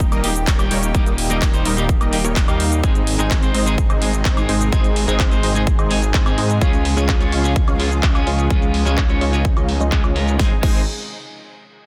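A straight 4/4 pulse drives this triumphant, anthemic festival progressive house excerpt, led by a punchy electronic kick up front and a big-room dance kit of snare, handclaps, metallic hi-hats, crash cymbal, cabasa and woodblock, its hats, percussion, snare and cymbals all low-pass filtered. A thick, menacing detuned saw bass, a full-bodied supersaw stab riff with dub echo and a filter sweep running until 10.4 seconds, a dark, clean picked electric guitar with harmonic tremolo entering at 0.2 seconds, and a lush, chorused unison pad in the background pump with sidechain over chords moving from Eb to Ab to Db and back to Ab. The mix sits in digital ambience with a dense, heavily limited modern master.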